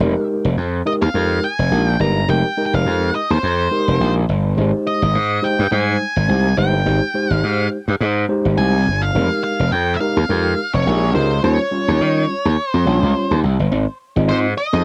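Smooth and feel-good, this short cut from a longer piece is early-eighties boogie funk in Ab major at 105 BPM, with a lightly swung sixteenth-note feel in 4/4. A gritty slap bass sits up front from the very start, bright, punchy and overdriven, carrying the groove from low F1 up to Eb3. Alongside it, a mellow tine electric piano provides clean, warm accompaniment, its tone softened by cassette tape and heard as if through built-in speakers. At 0.9 seconds an octave-fuzz lead guitar enters with the melody, dark, picked and distorted, sitting forward in the high register between C5 and Bb5. The harmony moves from Fm11 to Abmaj7 and back, reaching Eb13 before settling on Ab6 as a brief new section begins at 13.7 seconds. Light reverb and the home cassette recording give the whole a lo-fi character.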